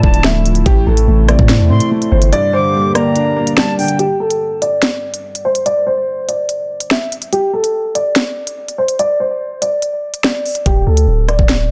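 A cold, dark drill beat in D minor at 144 BPM with a half-time feel opens with its full arrangement at once. A boxy, dark grand piano carries the melody through a low-pass filter and tape echo, while an airy silver flute with unsteady vibrato floats a second line above it. Beneath them, a felt-muted upright piano with audible action noise and a detuned sawtooth pad set in the background fill out chords moving from Dmadd9 to Am and Gm. The knocking kick, sharp snare, crisp hats and rim clicks of the electronic kit sit up front beside a deep, sine-like 808 bass, which drops out at 2.3 seconds. At 4.0 seconds the flute, upright and pad stop, leaving the grand piano and drums over a long break until the 808 returns at 10.7 seconds under a D5 chord, all framed by light studio reverb and a dense, heavily limited master in this short excerpt.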